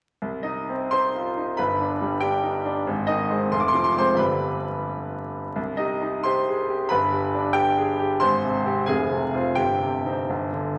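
A rubato sway in 6/8 drives this stormy, passionate classical piano study, a short passage cut from a longer virtuoso work that moves through a restless minor-key progression before arriving at a C minor chord over G near 9.6 seconds. The solo concert grand sounds clear, open and up front, ranging from a deep bass low in the instrument to high upper notes. A large studio reverb lends the sound a wet bloom, while vinyl crackle accompanies it.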